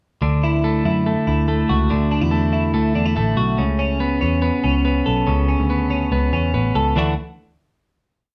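A bright, twangy twelve-string electric guitar sits up front, its clean, compressed arpeggios rolling through a short, youthful and breezy piece of jangly indie pop in D major at 142 BPM. Beneath it, a vintage muted picked electric bass adds a dark, round, melodic line, the band playing live together in one room with a wet reverb. The verse moves from Dadd9 to Aadd9 before settling on a closing Dsus2 at 7.0 seconds.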